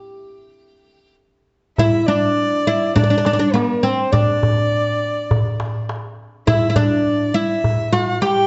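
Arabic maqam ensemble music at a festive 102 BPM in 4/4, where a woody, fretless oud plucked with a plectrum opens alone before a boxy, dark-toned solo violin with light vibrato joins on a second line and a clay-shell darbuka played with hard hands enters, both arriving together at 1.8 seconds, all three up front in a reverberant recital hall with a dark, warm production on this short cut from a longer piece.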